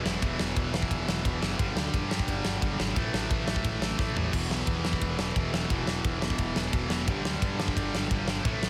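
Punk rock with a rowdy, rebellious edge, this short cut from a longer piece runs at a driving straight four. Two tight, bright distorted electric guitars open together at 0.0 s, picking a riff that moves through E5, G5 and A5, with one of the pair set further back in the mix. A fuzzy, overdriven picked electric bass sits beneath them in the background, its direct-and-amped tone adding a warm grit. The big acoustic rock kit stands up front with a fat snare, a tight kick, crash and ride cymbals and toms, its mid-forward sound carrying a rolled-off top and a roomy weight, and a drum fill at 4.0 s leads into the second pass. At 4.3 s a crunchy, double-tracked overdriven guitar joins in the background, thickening the riff as the E5 to G5 changes return. The sound is dry and close, pressed into a dense, heavily limited modern master.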